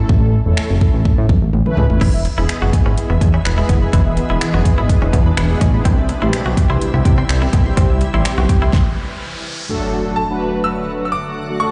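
Dance-pop at 125 BPM in 4/4 with a summery, carefree mood, cut from a longer piece. A punchy, tape-warm electronic drum kit sits up front with a fat snare, metallic hats, finger snaps, toms and a crash, joined by a thick, detuned analog bass and a dark, round synth brass carrying chorus, both breathing with sidechain pumping. After a drum fill at 1.5 seconds, a twangy, direct-recorded clean electric guitar riff with lush chorus enters at 2.0 seconds alongside a lush, wave-folded unison pluck playing arpeggios through a digital delay, while a shimmering, ethereal pad with built-in reverb arrives at 2.5 seconds to hold sustained chords in the background. The harmony moves from A to E to C, and at 8.7 seconds the bass, drums, pluck and guitar stop as an electronic riser builds into an impact at 9.7 seconds, where the chord turns to D. Over the brass and pad, a brilliant, polished grand piano takes a brief high melody at the close, all heard through a large studio reverb with a soft top end.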